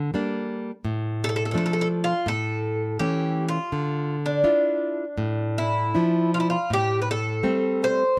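Close, detailed microphones in a moderate studio ambience capture this short, mournful and passionate fado-style ballad in D minor at a rubato 83 BPM, tuned to A4 = 438 Hz, where an up-front fingerpicked nylon-string guitar with fresh, full-bodied strings lays down the accompaniment from the start and an Irish bouzouki enters at 1.2 s with a mellow yet metallic picked melody on its double strings, moving through chords such as Gm, Dm/A and Dmadd9 before shifting to Am7 at 6.7 s.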